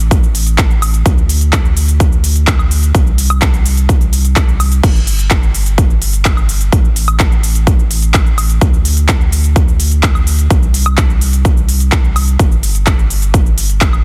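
Festival progressive house at 127 BPM in a straight 4/4, this triumphant, uplifting cut pairs a punchy, layered electronic kick sitting up front with a big-room drum kit of crash cymbal, handclaps, crisp hi-hats, shaker and woodblock re-recorded in a large room, while a deep, thick, saturated sub bass with a fast attack pumps under sidechain from G1 to D2, all inside a dense, heavily limited modern master with little reverb.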